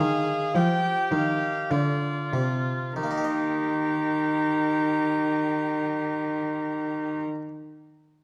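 An up-front, smooth bowed cello anchors this dance-like, flowing baroque-style sonata excerpt in Eb major at a rubato 48 BPM in 4/4, slowing over the opening moments while a distant, rich violin sings the melody with expressive vibrato and portamento above a present oboe's second line and a bright, airy Italian-style harpsichord continuo, moving from a rootless Bb7 to Eb at 3.0 seconds before the violin, oboe and cello stop at 7.2 seconds and the harpsichord rings on to 7.5 seconds in a dark, reverberant recital hall.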